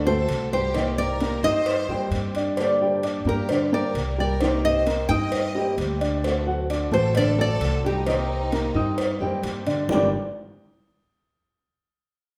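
Tight, high-tuned cowbell and bongos drive a straight 4/4 Cuban son and guajira groove at 131 BPM in G harmonic minor, danceable and sultry, as a woody upright bass sits up front beneath a dark, mellow baby grand playing short-sustained arpeggios, a boxy fingerpicked swing-style acoustic guitar comps, a full-bodied classical nylon-string guitar carries the melody, and a clear, distant chamber violin section adds a bowed second line with vibrato, the band playing live in one room with a wet large-studio reverb in this short cut from a longer piece.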